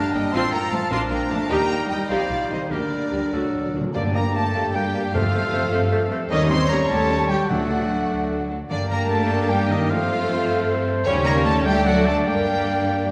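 An urgent, stormy classical-period movement in a quick 6/8 with a flexible, rubato feel opens with the full orchestra at once: a lush, focused violin section carries the melody while a second, softer-edged violin section, a warm oboe, a clear, distant clarinet and a very quiet, hollow flute section weave supporting lines around it. Beneath them, a rich viola section and a present bassoon fill in the accompaniment, and a smooth, even cello section joins a double bass section in anchoring the bass, with mellow French horns holding sustained chords in the background. Timpani played with medium mallets enter at 2.7 seconds, adding a fill just before the music moves into its second section at 4.0 seconds, and drop out after 8.1 seconds. A trumpet section with a soft attack adds stabs from 3.9 seconds to the end. The harmony circles restlessly through minor-key progressions that keep returning to the tonic chord, sustaining the tension. 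A wet scoring-stage reverb places the listener further back in the room, and the passage is cut from a longer piece.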